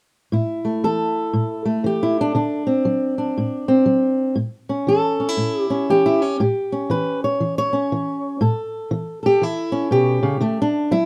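A fingerpicked steel-string acoustic guitar carries this short excerpt of acoustic country blues alone, its dark, boxy tone sitting up front in light reverb. The mood is soulful and rollicking at 119 BPM in 4/4 with a swung eighth-note feel, moving through A5, D7 and A7 harmony in A mixolydian. At 8.4 seconds the guitar steps into a solo passage, landing on D at 10.4 seconds before the clip ends at 11.1 seconds.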